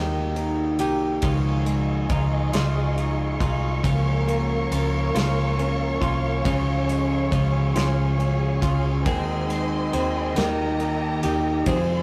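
This tender, romantic six-eight pop ballad excerpt opens with a dark flamenco guitar, fingerpicked on fresh strings with audible finger squeak. Alongside it, a clean, compressed twelve-string electric guitar picks arpeggios in the background, and a round, amped, foam-muted fingered electric bass sits up front. A modern acoustic drum kit joins at 0.4 seconds with a punchy kick, a medium-tuned snare and ride cymbal in a pumping studio room. At 1.2 seconds a bowed string section enters with sustained chords, its smooth top carrying expressive vibrato and portamento. The harmony moves through Eb, Dbadd9, Bbm/Db, Db and Ab/Eb before settling back on Eb, all heard through wet reverb in a rough rehearsal-room recording.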